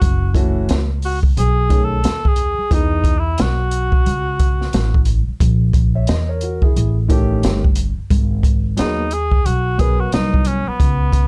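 A mellow cor anglais solos with light vibrato in a classical style over woody pizzicato upright bass and a boomy, up-front acoustic jazz kit from the very start, joined at 0.3 seconds by a vintage upright piano, in this cool, nocturnal jazz-hop fragment at 89 BPM in G# minor, with swung sixteenths and a dark, dry production.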